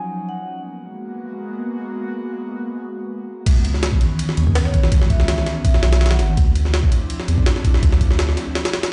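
A compressed, pitched-up jungle sampler-style drum kit arrives up front at the drop at 3.5 seconds, its thumpy kick, high-tuned snare, ride and crash cymbals carrying a gritty, tape-warm character and the feel of a large room. This atmospheric, nostalgic drum and bass and jungle passage, cut from a longer piece, runs at 165 BPM in 4/4 with a light swing on the 16ths, in C# dorian. Entering with the drums, a deep, saturated sine sub bass holds thick, sustained notes with a fast attack. From the opening, an airy, breathy pad with chorus and vintage 12-bit sampler grit sustains mellow chords through D#m9, G#m9, C#m9 and Dm9. A metallic, ringing vibraphone, played with medium mallets and motor off, adds brief melodic phrases through a dub echo. The whole sounds as if played on a big sound system in a bare room, with a large studio reverb, digital ambience and a dark top end.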